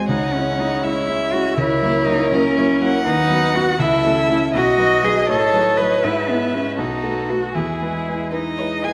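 Graceful and lively, this quick classical-period movement for piano quartet moves in a straight 6/8 at 81 BPM (dotted quarters) in E major, a short passage cut from a longer piece. A rich, distant violin carries an even, bowed melody with vibrato, while an up-front cello adds an expressive second line with portamento, and a second violin sits in the background with a soft attack, gliding portamento and a smooth top. A vintage-sounding concert grand with deep bass and a warm tone supplies the accompaniment up front as the harmony travels from C#m to a settled E close, all of it wrapped in a wet concert hall reverb.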